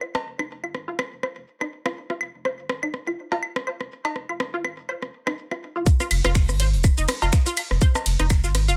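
Set at 123 BPM in 4/4 with a 56% swing on the sixteenths, this sparse, hypnotic minimal techno passage in F minor is cut from a longer piece and sits over an Fm7 chord that resolves to plain Fm. A squelchy, nasal blip pluck carries the riff between Eb4 and C5, its bright, resonant filter tone thickened by chorus, treated with delay and pumped by sidechain. Alongside it, an overdriven garage kit of finger snaps, metallic hi-hats, ride cymbal and shaker sits under low-pass filtering, while up-front analog claves, rim click and cowbell add overdrive and delay echoes. From 0.3 seconds a deep, thick, saturated sub bass moves between Eb1 and Ab1, sustained and pumping with the sidechain. At the drop at 5.9 seconds a tight electronic kick arrives at the front of the mix, joined by a very quiet, airy 70s kit whose hi-hat and fat snare add a polished acoustic layer. The sound is dry, with little reverb.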